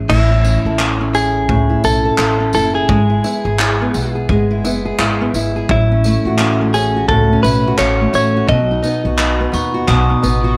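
Under light reverb, this easy-going, heartfelt acoustic pop excerpt swings gently at 86 BPM over chords moving from A to F#m7/A to B, as a dark fingerpicked steel-string acoustic guitar with finger squeak, a twangy, plunky, very quiet open-back banjo playing arpeggios, a woody, thumpy pizzicato upright bass and a loose indie drum kit with a punchy kick, handclaps, tambourine and crash support an up-front, clean, compressed electric guitar melody recorded direct, while a bell-like glockenspiel struck with hard plastic mallets adds a ringing second line from 9.2 s.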